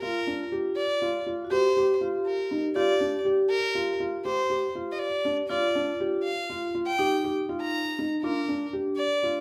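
From the first moment, a close, reedy violin with a gut-string, period-style tone carries the melody. Beside it, a ringing vibraphone with slow motor vibrato plays a second line, and a felt-muted upright piano adds dark, intimate arpeggios with audible action noise. This pensive, restless chamber piece, cut from a longer work, moves in an uneven 11/8 at 241 BPM in eighths, tuned slightly low to A4 = 435 Hz. Its harmony passes from Bb through Cm and Dmadd11 to Ebadd9 and Gm7, all set in a moderate recital-hall reverb.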